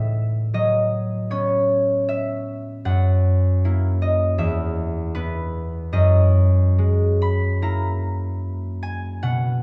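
Peaceful and dreamy, this short classical fragment features a solo concert harp, fingerpicked and up front, moving with a rubato feel in 4/4 at roughly 64-82 BPM across a span from E2 to B5. Its ringing, warm tone drifts through A69, F#7 at 2.8 seconds, Esus2 and F#13 over 9.6 seconds. A wet recital hall reverb and a dark production wrap the harp in a soft glow.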